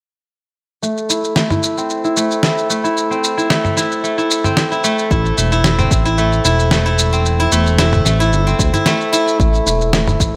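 A silvery steel-string zither, played with fingerpicks, plays arpeggios in this earthy organic downtempo piece from 0.8 seconds, its ringing notes shaded by a low-pass filter, tape echo and a filter sweep that runs through most of the passage. Alongside it from the start comes a dusty, sampler-style soul kit of shaker, toms and a fat, gritty snare, compressed and tape-warm and placed up front, giving a gently swung sixteenth-note feel. At 5.1 seconds a smooth, evolving synth bass enters, built from sawtooth and square waves with a fast attack, sustained notes and vibrato, and pumped by sidechain compression. With it arrives a deep, layered electronic kick, overdriven and re-recorded in a large room. Light digital ambience surrounds the parts in this brief section cut from a longer piece, which ends at 10.4 seconds.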